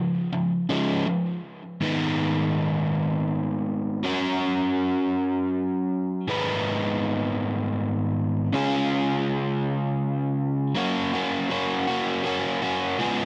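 A crunchy, overdriven electric guitar, bright and double-tracked up front with analog delay, plays alone through this upbeat, jangly rock excerpt in 6/8 at 54 BPM in F# major, its picked lines spanning G#2 to B4 over a C#, G#m, F# progression that resolves to F# at 10.8 seconds, all set in a moderate spring reverb.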